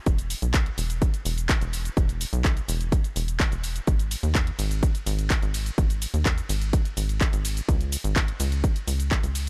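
A punchy, layered electronic kick sits up front from 0.1 s, driving this short progressive house passage at 126 BPM in a straight 4/4, in G# minor. Alongside it, a dark, up-front sequencer bass built from sawtooth and square waves plays filter plucks with a fast attack and quick decay, moving between E1 and D#2 and pumping with sidechain compression. A house kit of handclaps, hi-hat, ride cymbal and shaker sits lower in the mix with a tape-warm, produced character, its hats and cymbals also breathing with sidechain pumping. Both the kick and the kit were re-recorded in a small room, yet the overall sound is dry, with little reverb. The mood is driving yet dreamy, holding one steady groove until the kick stops at 9.2 s and the bass and kit carry on to 9.5 s, where this cut from a longer piece ends.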